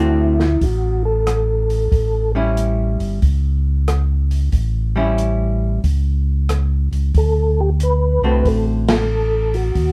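Heard from further back in a lightly reverberant room, this soulful, bluesy soul jazz organ trio excerpt swings over D7 and A7 chords. A round, lightly overdriven tonewheel organ bass carries the low end throughout, and a clean, picked hollow-body archtop guitar accompanies until 9.1 seconds. An acoustic jazz kit with a punchy kick and dark cymbals joins at 0.4 seconds, while a soft, flute-like percussive tonewheel organ plays the melody in two short spans, both organs turning through a slow rotary speaker and chorus vibrato, and the band hits an accent at 8.8 seconds.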